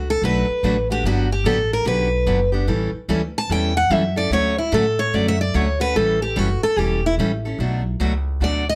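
Lively and charming, this short excerpt of acoustic string swing in the jazz manouche style features a bright, freshly strung steel-string acoustic guitar picking a soloing melody from the very start, its finger squeaks audible up front. A second picked steel-string guitar with a warm tone supplies accompaniment from 0.2 seconds, while a woody, thumpy upright bass with gut strings plays pizzicato underneath, all set in a light reverb. The swung harmony moves through chords such as Gmaj7, A7 and Bm7.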